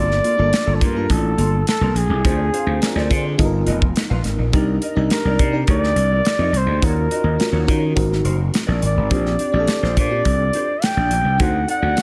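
Urban and nocturnal, this polished 1980s jazz-funk pop excerpt moves at 105 BPM in a straight 4/4, set in G minor and cut from a longer piece. A warm flugelhorn carries the melody throughout, its soft attack, vibrato and scooped notes giving the solo line a jazz-style phrasing. Beneath it, an FM electric piano layered with a soft pad supplies lush, dreamy accompaniment, detuned and mellow with tremolo and chorus, while a dark, clean electric guitar plays a fingered riff in the background through analog chorus. The growly slap bass sits up front with a bright, punchy overdriven bite, and an airy, tight-kicked studio drum kit with hi-hat and medium-tuned snare enters at 0.1 s. The harmony drifts through rich extended chords, from Gm9 and G7alt to Ebm7, Bb69 and a closing D7b9, all wrapped in light reverb.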